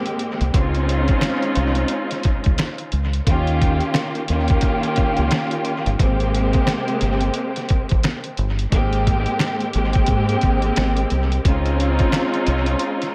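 A lush, bowed string section with expressive vibrato carries this confident boom-bap hip-hop passage from the start, filtered at both ends and trailed by dub echo as it moves through Abmaj7, Dbmaj7 and Eb7 in Ab major. Underneath, a compressed, pitched-down sampler-style kit with a muffled, thumpy kick, a medium-tuned snare and hi-hat sets a swung 88 BPM groove with its own dub echo, joined at 0.4 seconds by a dark, round fingered electric bass. Very quiet, distant finger snaps sit far back in an echo-heavy mix with light room ambience, in a 13-second cut from a longer piece.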